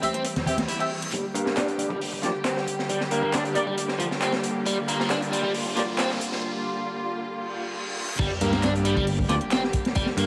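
A straight 136 BPM breakbeat groove in G dorian drives this gritty, raw fragment, where a crunchy, saturated breakbeat kit with a punchy kick and high-tuned snare sits up front over a tape-warm analog drum machine's handclaps and hi-hat, while hard-hand congas flash briefly at the start, a bright picked electric bass enters at 1.1 seconds, a biting, double-tracked overdriven guitar riff with sampler grit and tape echo, mellow, distant brass stabs and a rich, bowed string section pumping with sidechain all play across a build-up with filter sweeps on guitar and brass, and reverse cymbals, a riser and a sub drop in the background lead into a break at 6.4 seconds and an impact-marked drop at 8.2 seconds, all wrapped in lush hall reverb and vinyl crackle.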